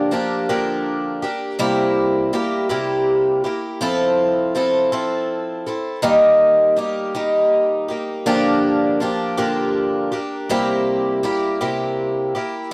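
A shimmering, octave-doubled picked twelve-string acoustic guitar plays alone and up front throughout this nostalgic, open-road rock excerpt in 6/8, its boxy tone moving through Bb6/D, C7, Fmaj7 and Eb before a short second section begins at 10.5 seconds, all captured in a dry, close 1970s-style studio sound with light reverb.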